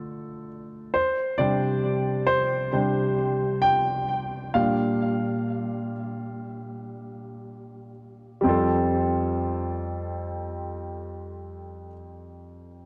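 In a straight 4/4 at 58-68 BPM that slows from 1.0 to 8.4 seconds, this heartfelt, emotional pop fragment in F major features a solo concert grand piano, clear and polished with deep bass, short sustain and an up-front presence touched by digital delay, moving through Dm, Csus2 and Bb6 before settling on Fadd9 at 8.4 seconds, all within a lush hall reverb and a dark production that runs to 12.9 seconds.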